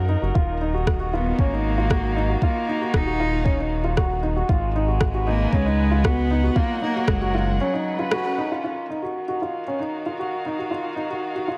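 A soft electronic kick and a layered, overdriven rim click set a straight, hypnotic pulse in this intimate piano and strings electronica, while a round analog bass pumps under sidechain beneath sustained chords from a veiled, con sordino string quartet that pumps likewise. A dark, worn concert grand sits up front with a delayed riff, its action noise audible, and from 1.1 seconds a warm, expressive bowed cello carries the melody with vibrato and portamento. A break arrives at 7.6 seconds as the bass stops, and after a band accent at 8.1 seconds the rim click drops out at 8.2 seconds, leaving the piano and muted strings to continue alone in a small, lightly reverberant room until this cut from a longer piece ends.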